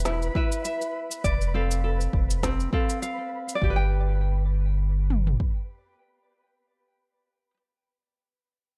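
A lightly swung 4/4 groove at 101 BPM in G mixolydian carries this delicate, pastoral folktronica fragment. Up front, a bright, fingerpicked tenor ukulele plays arpeggios through tape echo, beside a deep, round sine sub bass that holds until 5.4 s. A mellow, flickering granular texture with its own reverb glimmers in the background, while an electronic snare with a woody, tape-tinged tone and a shaker drop out at 3.6 s as the chords move from Em and Dm7/F to G. An organic electronic kit adds a deep kick and toms, and the whole is set in a dry, close mix.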